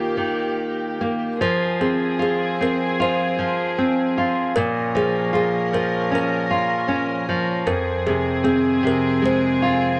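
Innocent and sleepy, this excerpt of a children's lullaby drifts at 77 BPM with a gentle rubato feel, moving from Eb through F minor and Bb minor chords. A woody, ringing kalimba carries the thumb-plucked melody over a dark, full-bodied nylon-string guitar that sits up front, fingerpicked with the occasional finger squeak. A distant studio string section holds floating, soft-attack chords played sul tasto, and the whole piece sits in a moderate club reverb.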